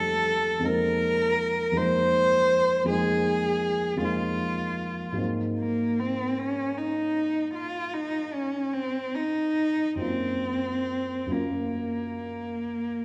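Classical impressionist duo in a rubato 12/8, luminous and dreamy, where a single bowed cello sings the melody up front with vibrato, soft attacks, gliding portamento and expressive phrasing, while a dark, mellow concert grand with deep bass accompanies through lush chords moving from F9 toward Gbmaj7 at 10.0 seconds, all bathed in a wet recital-hall reverb in this short section cut from a longer piece.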